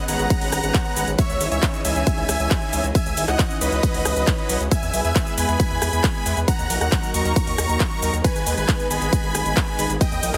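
Heavily compressed with a radio-like squeeze and only light reverb, this short cut from a longer uplifting trance track sounds dense from the first beat. A huge, detuned supersaw lead carries the melody up front, euphoric and full-bodied with an airy noise layer, pumping against the sidechain while dub echoes trail its phrases. Beneath it, a lush unison pad holds sustained chords with a soft attack, its bright, chorused shimmer also breathing with the sidechain. A gritty, saturated synth bass with a resonant, oscillator-synced edge drives the low end. A punchy, overdriven electronic kick sits prominently from 0.3 seconds, framed by a big-room dance kit of handclaps, metallic hi-hats, ride cymbal, rim clicks and shaker that carries a small-room character. Moving from G#m through C#madd9, E and D#m before returning to G#m, the passage feels bittersweet yet soaring.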